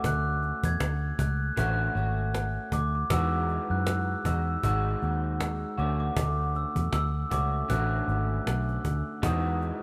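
A rough home-demo mix with light reverb carries this laid-back, dreamy indie bedroom-pop excerpt at 78 BPM with a gentle 16th-note swing, where a mellow, bell-like glockenspiel played with rubber mallets sings the melody through a lush chorus, a slightly broken-up, lo-fi electric guitar through a small old amp picks Dmaj7 and Emaj9 chords with analog chorus and vibrato, a dark, round, foam-muted vintage bass sits up front, and a snappy cajon struck with hard hands keeps time.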